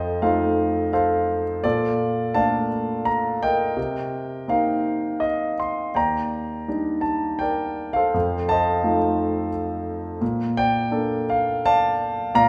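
Calm and tender, this short passage of lyrical classical solo piano unfolds in an unhurried 3/4 at 84 BPM, its rubato feel giving the phrases room to breathe. A concert grand carries everything alone for the full 12.5 seconds, ranging from Eb2 up to C6 in Bb major, tuned to A4 = 442 Hz. The instrument sits up front and sounds intimate and natural, with deep bass, long sustain and the audible noise of its action adding a close, human presence. The harmony moves gently from F7 through Bbmaj7, Cm7 and Ebmaj7, then back through F7 to settle on Bbmaj7 at 10.2 seconds. A generous recital hall reverb with a 1.5-second decay surrounds the piano, lending the sound the glow of a church or concert hall as this fragment of a longer piece drifts by.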